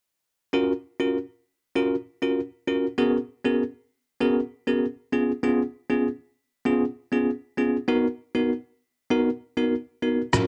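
A bell-like, up-front tine electric piano carries this sunny, joyful afrobeats clip at 98 BPM in F# major, moving through F#maj7, G#m11, C#7 and Bmaj7 over a dark production with light reverb, until at 10.3 s a muffled, pitched-down electronic rim click and shaker and ringing, hard-hand congas enter just as the cut ends.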